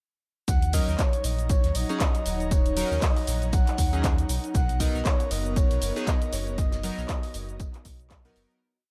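A dry, punchy electronic kick drives this moody, hypnotic deep house piece at 118 BPM in Eb minor with a swung sixteenth feel, joined by a deep house kit of dark hats, shaker and handclaps, a very quiet looped 70s breakbeat with a fat, rolled-off snare, a deep sine sub bass riff with an octave, glossy chorused polysynth stabs, a breathy flute-like lead with vibrato, chorus and delay playing call phrases, an airy pad pumping under the kick, and a mellow ethereal pad with phaser and reverb in the background, all set in digital ambience as the chords move from Ebm7 to Bmaj7 at 4.3 seconds before a fade-out begins at 5.9 seconds.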